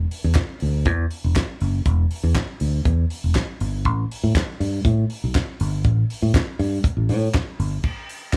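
Sultry and glamorous, this short disco excerpt moves at a steady 120 BPM in a straight 4/4, tuned to A4 = 442 Hz. A fingered electric bass carries the low end from 0.0 to 7.8 seconds, ranging from E1 to A2 with a dark, round, punchy tone that sounds direct and amped and sits up front. A damped 70s drum kit enters at 0.1 seconds and runs until 8.4 seconds, using kick drum, snare drum, hi-hat, crash cymbal and handclaps. The kit is acoustic and dry, with a tight kick, a fat snare and dark cymbals, and it is also placed up front. The room carries little reverb, giving the pair a close, intimate presence, and the clip is cut from a longer piece.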